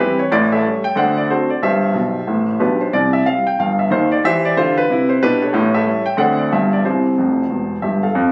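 A brisk swing at 184 BPM in 4/4, with eighth notes swung at 62%, drives this short, exuberant stride piano fragment cut from a longer piece. A solo grand piano carries everything from 0.0 to 8.3 seconds, ranging from a deep E1 up to G5, with a warm, up-front tone tuned to A4 = 442 Hz. The harmony in C major moves through A7, D7 and C/G to G and C, then circles back through A7, D7 and G7 to land on C at 6.8 seconds. Playful piano fills pop up at 1.9 and again at 7.2 seconds, adding a cheeky flourish. Captured on a phone in the room, the sound carries a light club reverb that gives it a lively, close-at-hand atmosphere.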